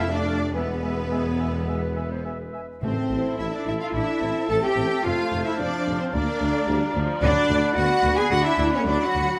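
Rich, bowed cellos stand out in this dramatic, restless passage from a fast romantic symphonic movement with a rubato 4/4 feel, as double basses and a dark, punchy tuba share the bass, a distant, mellow French horn section holds sustained chords, and expressive violas with portamento accompany. A clear violin section carries the melody over a soft-attack second violin line, while a hollow silver flute, a roomy oboe and a background clarinet add second lines, with timpani entering from 2.8 to 3.6 s, set on a scoring stage with moderate reverb.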